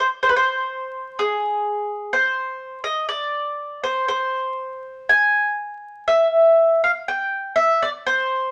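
A mellow, round acoustic mandolin, picked on double strings and placed up front, plays alone from 0.0 to 8.5 seconds across a range of Ab4 to Ab5 in this mournful, passionate fado fragment, cut from a longer piece, moving in a rubato 2/4 at about 61 BPM within a moderate studio reverb and a layer of vinyl crackle.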